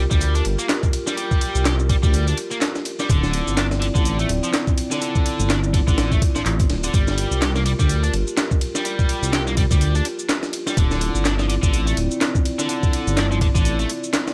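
Small-room drums in a digital ambience carry this swaggering, funky breakbeat, cut from a longer piece at 125 BPM in G minor with a swung sixteenth feel over Gm7 and Dm9. Up front, a compressed, sampler-style break kit with a thumpy kick, high-tuned snare and hi-hat drives alongside a deep, rumbling detuned saw bass, while a quieter analog drum machine adds handclaps, ride and shaker. A bright, overdriven, double-tracked electric guitar riff with tape echo and 12-bit sampler grit sits over a moody, slow-attack analog pad whose sustained chords carry chorus and sidechain pumping.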